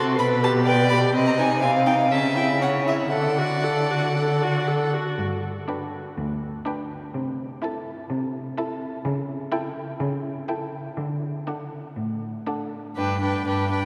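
Graceful and spirited, this fragment of a quick classical-period string quartet movement in G major moves at 114 to 129 BPM with a rubato feel, as two rich, smoothly bowed violins carry the melody and a second line above a warm, expressive viola that slides with portamento and a focused, clear cello bass, each voiced by one vibrato-laden player and bathed in a long, wet cathedral reverb, with a new section arriving at 5.2 seconds.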